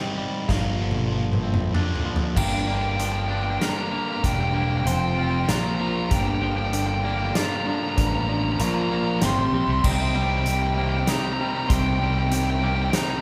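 Post-rock in G minor at 96 BPM and a steady 3/4, this brooding, cathartic passage is cut from a longer piece. It opens on a sludgy distorted guitar riff, up front and overdriven, set against a twangy, clean electric guitar picking arpeggios and a pedal steel guitar holding warm sustained chords with slide and volume swells, both sitting in the background. At 0.5 seconds a big acoustic rock kit, with punchy kick, bright cymbals and a medium-tuned snare, enters with a drum fill, alongside a growling fingered bass that is overdriven and low. At 2.4 seconds the sludgy riff gives way to a fuzz guitar riff, compressed and up front, while a crunchy overdriven guitar carries a high melody as the music builds through the rest of the passage. The harmony moves from Bbadd9/G to Gm7, through power chords on F and Bb, back to Gm7, then through Bb and C power chords before settling on Cm7, all bathed in a wet, hall-like reverb with a 1.6-second tail.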